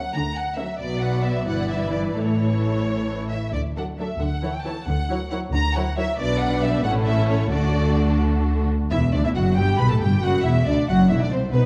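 A violin section carries the melody from B4 to B5 with a focused, vibrato-rich tone and a smooth top, while a second violin line spans E4 to B5. This is a quick, cheerful and spirited classical-period movement for string orchestra in D major, moving in 6/8 at 90 BPM counted in dotted quarters, with a rubato feel and tuning at A4 = 441 Hz. Violas fill in the accompaniment with an even, somewhat distant sound. Cellos and a woody double bass section share the bass, bowed and lush, with the basses reaching down to E1. The harmony moves through F#7/D, Bm, Em7/G and A before settling on D, and at 8.9 seconds a new passage opens on Dadd9/E and Gadd9, ending on D9/E. A wet recital hall reverb and a dark, warm production round out this excerpt, which is cut from a longer piece and lasts about 11.7 seconds.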